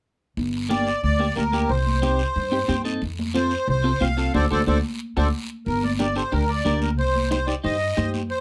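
A reedy, sweet accordion with light tremolo tuning carries the melody up front in this passionate, fiery cumbia excerpt in G minor at 182 BPM, over a woody, thumpy pizzicato upright bass, high-tuned congas set back in a small room, a raspy, dry guiro and a picked, compressed clean electric guitar bathed in lush chorus that adds a brief fill, with a band accent from 4.3 seconds and a percussion fill at 4.7 seconds leading into a new section at 5.7 seconds.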